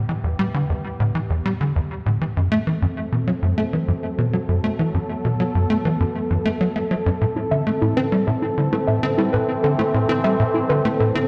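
Drenched in a wet echo-chamber reverb, this expansive, cosmic fragment of sequencer-driven space music fades in on a sweeping, resonant, detuned pad holding sustained chords over a punchy, up-front sequencer bass riff with lush chorus, gritty 12-bit sampler texture and analog delay, while a warbly, lo-fi pluck enters at 7.4 seconds with arpeggios in the background as the harmony moves from Em through F#dim to Am.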